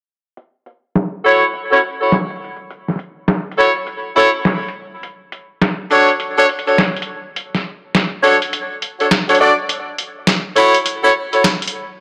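A dry, gritty hardware recording bathed in a lush hall reverb carries this playful, swaggering glitch hop fragment at 103 BPM with a swung 16th feel: a compressed, pitched-down, tape-warm boom bap sampler kit of low-passed hi-hat and medium-tuned snare enters at 0.4 s under a filter sweep, and from 1.2 s a clear, punchy horn section with light vibrato plays tight, up-front stabs between D4 and D5 through a low-pass filter and analog delay, over chords moving from Esus24 to Dmaj7 and back to Esus24.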